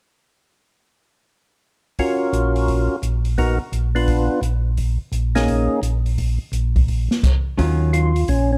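A percussive tonewheel organ opens at 2.0 seconds with a bluesy, late-night soul jazz melody in Eb minor, its fat, lightly overdriven tone colored by third-harmonic percussion, vibrato and a slow rotary speaker. The open jazz drum kit starts at the same moment, swinging at 171 BPM in 4/4 with dark cymbals, a medium-tuned snare, hi-hat, crash and a boomy kick, sounding airy and polished in a small room. Just after, a mellow tonewheel organ carries the bass line low in the register, round and clean with key click and its own slow rotary speaker, sitting slightly louder than the other parts. The harmony moves from Gbmaj7/Bb to a break with the chord dropping out at 6.2 seconds, then lands on Ebm9 at 7.6 seconds, where a compressed, hollow-body archtop guitar adds a brief picked, clean accompaniment. The production is dark and warm, with little reverb, and this fragment is cut from a longer piece.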